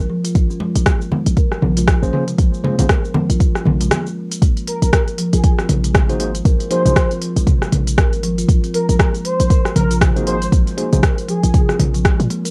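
A homespun cassette sound with light reverb frames this earthy afro house excerpt, which moves at 118 BPM in 4/4 with a swung sixteenth-note feel over a Bbm7 chord. An up-front, deep, layered electronic kick and a tape-colored drum kit of crisp hi-hats, rim clicks, shaker and toms sit beneath a boomy, sine-based 808-style bass whose sidechain pumping gives it a breathing motion. A woody, dark kalimba plays ringing thumb-plucked arpeggios with analog delay and the same pumping, while close, dry, medium-tuned congas ring out until 4.0 seconds. Short, mellow, clean electric piano stabs with a built-in-speaker tone and analog delay return several times. After a brief break, the drop arrives at 4.4 seconds with a move to Ab, and at 4.7 seconds an expressive, evolving sawtooth synth lead enters with vibrato, ensemble chorus and delay, carrying a smooth, sustained melody in a high register.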